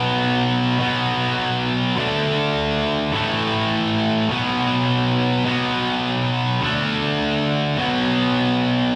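In free time, this energetic, rowdy punk snippet, cut from a longer piece, features a lone sludgy, overdriven electric guitar, picked and double-tracked, sitting up front with a slapback echo. It moves through power chords from B5 to D5 and A5, back to B5 and on to D5, before returning to B5 near 7.8 seconds, and plays alone until 8.9 seconds. The sound is that of a live gig heard through the venue's PA, with light recital-hall reverb around it.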